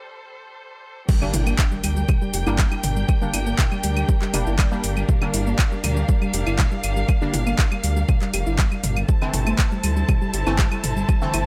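Melodic techno at 120 BPM in G dorian, this dramatic, melancholic passage is cut from a longer piece and opens with a dark chamber string section holding sustained chords alone, its bowed ensemble tone expressive with vibrato and a smooth top. At 1.1 seconds the drop arrives with a very quiet electronic impact, as an overdriven, deep electronic kick sits up front beside a layered deep house kit of metallic hats, claves, handclaps, shaker, toms and crash cymbal. A dark detuned saw bass rumbles and beats underneath, while a soft, round pluck traces gentle arpeggios through chorus and tape echo. A punchy, nasal synth brass stab cuts through with a bright, brassy edge, colored by chorus, phaser and tape echo. Sidechain pumping makes the strings, pluck, stabs and bass breathe, all within a digital ambience as the harmony moves from Am/G to Gm and back to Am/G at 9.1 seconds.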